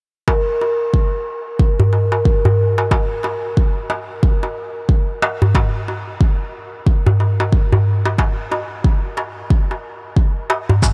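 An overdriven, deep electronic kick sits up front with a small-room ambience, driving this warm, mystical organic downtempo groove at 91 BPM with a 16th-note swing. A crisp, close and dry metal-shell darbuka plays alongside it, while a quartz singing bowl adds a bright, airy ring with slow beating underneath. A gritty, tape-toned shaker appears only briefly at 10.8 seconds, just as this short cut from a longer piece ends, with light reverb around the mix.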